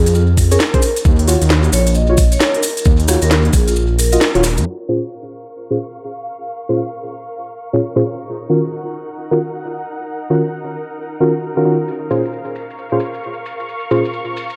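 Swung two-step UK garage at 133 BPM in Bb minor sets a moody, soulful groove: an overdriven, knocking electronic kick sits up front beside a cracking snare, crisp filtered hats and rim clicks from a tape-warm garage kit, with grainy maracas and a rumbling, detuned sawtooth bass anchored on Bbm9 and Ebm9. A ringing vibraphone played with soft mallets carries an airy melody through tape echo, while deep, nasal chord stabs with chorus and echo run from 0.5 to 14 seconds. After the kick drops out early and the garage kit and bass stop at 4.6 seconds, a distant, lush string section with sidechain pumping enters at 4.7 seconds under a long filter sweep, and the maracas return at 11.9 seconds in this echo-heavy, filtered mix.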